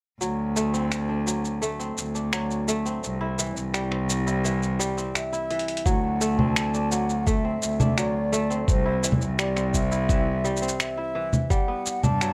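A ringing, fingerpicked kora opens this pastoral folktronica excerpt at 85 BPM in straight 4/4, its arpeggios softened by a low-pass filter and digital delay, over a bowed, reedy cello bass with gut-string tone and a muffled, pitched-down lo-fi kit of congas, finger snaps, hi-hat and shaker. An airy, hollow concert flute carries the melody from 5.2 seconds, tongued with vibrato and trailed by its own delay, and after a drum fill a compressed, thumpy electronic kick joins at 5.9 seconds as the chords move between D7 and C before landing on Gmaj7. Light reverb surrounds the mix, while the up-front drums carry a tape-warm, small-room character.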